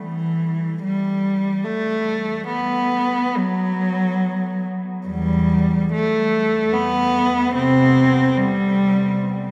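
Classical and meditative, this lonely, free-time passage for unaccompanied cello, cut from a longer piece, features one player bowing a rich, focused line with vibrato, up front, ranging from E2 to C4 over 9.5 seconds in a church or concert hall, where a cathedral reverb with a 7.4-second decay makes the sound wet and spacious, tuned to A4 = 441 Hz.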